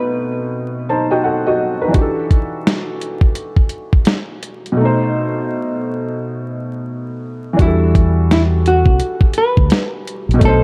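Dark, warm production with vinyl crackle and light reverb gives this short lo-fi hip hop excerpt a nostalgic, reflective haze, set in E minor at 85 BPM in 4/4 with a 16th-note swing. A soft, muted upright piano with a thin felt tone plays intimate, mellow accompaniment throughout, softened by a low-pass filter, while a clean, picked hollow-body jazz guitar with a dark, filtered tone sketches a brief melody at the very start. A gritty, compressed sampler-style drum kit with a thumpy kick, medium-tuned snare and hi-hat enters at 1.9 seconds and sits up front, the loudest part of the mix. A break arrives at 4.8 seconds over a B7b9 chord. At 7.6 seconds the guitar returns and a round, direct deep dub fingered bass joins, anchoring the closing Em11 section.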